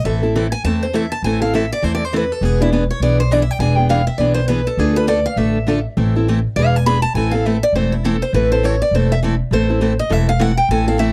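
A picked steel-string acoustic guitar carries the melody across this swinging, bittersweet excerpt of acoustic string swing in the jazz manouche style, its bright, boxy parlour tone sitting up front with the snap of fresh strings as it solos from start to finish. A second picked parlour guitar supplies accompaniment from 0.1 seconds, equally bright and close, moving through Am, E7 and Dm before settling back on Am. Beneath them, a pizzicato upright bass strung with gut gives a woody, thumpy low end, placed just as far forward as the guitars. The eighth notes carry a light swing, and the minor harmony gives the line its wistful edge. The sound is dry and intimate, like a close 1970s-style studio session, with only a touch of reverb around the trio.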